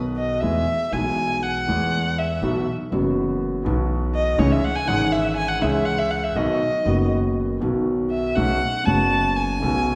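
A dark, bowed violin carries this passionate and playful tango, entering at 0.2 s and taking a solo from 0.4 s onward, its single player shaping a smooth top line with vibrato and expressive portamento. Up front beside it, a warm grand piano supplies the accompaniment, moving through a harmony that begins on E and passes through Bsus4, C#m and B before settling on Bsus2. Beneath them, a plucked upright bass on steel strings gives a woody, growly and thumpy foundation. The pulse is held in a flexible rubato feel in common time. A wet recital hall reverb wraps the ensemble in the resonant air of a church or concert hall, and the passage is cut from a longer piece.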